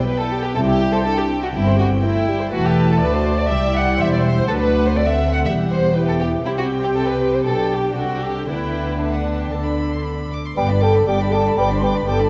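A quick, spirited and graceful classical-period orchestral excerpt in G major at 121 BPM opens with violins carrying a high melody over an up-front second violin line, viola accompaniment and mellow, distant French horn chords, joined at 0.5 seconds by cello and double bass, all strings bowed sul tasto with soft attack and vibrato for an intimate feel, before dark cor anglais, pure flutes, a very quiet clarinet and clear bassoon enter at 10.6 seconds, the whole set in moderate stage reverb with vinyl crackle and a gently rubato pulse.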